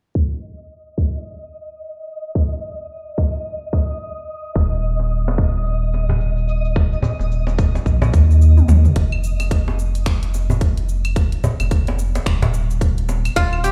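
This meditative, hypnotic organic downtempo passage opens with a tight, tape-tinged electronic kick sitting up front and a layered deep house kit of cabasa, claves, finger snaps, dark hi-hats and toms, both carrying small room ambience over a swung groove. Moments later, a twinkling granular texture with an octave-up shimmer drifts in, slow to bloom and bathed in its own reverb, while a filter sweep runs through the opening stretch. At 4.6 seconds a deep, round sine sub bass arrives up front with a sidechain pump, and a woody cajon with faint snares soon joins. A drum fill leads into the second section at 9.0 seconds, where the granular texture falls away, and at 13.4 seconds a bright, silvery guzheng rings out fingerpicked arpeggios. The whole mix sounds as if played through a big sound system in a bare stone room, softened by a low-pass filter, and the passage is cut from a longer piece.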